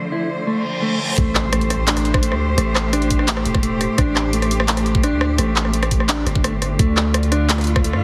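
This dark, spacious half-time drum and bass passage, cut from a longer piece, opens with a bowed cello section holding sustained chords over Dm, smooth and even with vibrato, its level pumping under sidechain. A clean, fingered electric guitar with a mellow, shadowed tone joins with arpeggios trailing through dub echo, while a reverse cymbal in the background rises into an electronic impact as the drop lands at 1.2 s. There the groove arrives at 171 BPM in A minor, moving to Am7: a knocking, layered electronic kick and an up-front kit of handclaps, rim clicks and bright hats, both re-recorded in a small room. Beneath them, a deep, sine-toned 808-style bass with fast attack and long decay sits up front, and the harmony returns to Dm at 6.8 s. Light reverb and heavily compressed, radio-like sound give the whole track a boxy, squeezed character.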